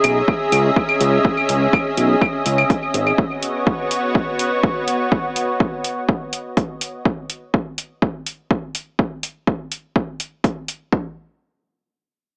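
A straight 4/4 pulse at 124 BPM drives this dramatic, cinematic melodic techno excerpt, with metallic electronic hi-hats and claves trailing dub echo and a punchy kick arriving at 0.3 s, both up front with a small-room character. A fat, detuned sawtooth bass pumps with sidechain ducking until 3.1 s, while a lush, chorused unison pad holds bright C#m and B chords until 7.0 s and a cloudy granular texture drifts in the background. The mix is echo-heavy with light reverb and a small-speaker sound.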